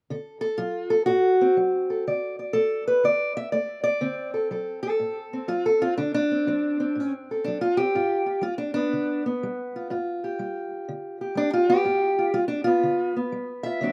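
A fingerpicked steel-string acoustic guitar plays alone from 0.1 to 13.9 seconds in this laid-back, swaggering acoustic country blues excerpt, its dark, boxy parlour tone sitting up front with a slapback echo over a swung 4/4 feel as the chords move from D7 to G7 at 7.9 seconds, all captured outdoors with little reverb.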